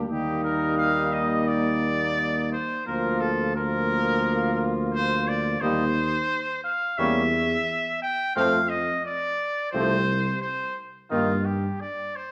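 A straight 4/4 pulse at 87 BPM carries this triumphant classical brass quintet passage in Bb major, cut from a longer piece, with the up-front trumpet singing the melody from 0.1 s in a clear tone with light vibrato and a soft attack. Beneath it, a vintage-toned flugelhorn plays a second line while a smooth-topped French horn and a brilliant, roomy trombone sit in the background as accompaniment, and a mellow tuba anchors the bass up front. The harmony moves from Eb through Bb/D, Cm7/Eb, Edim and F to Eb/G, all bathed in a wet recital-hall reverb.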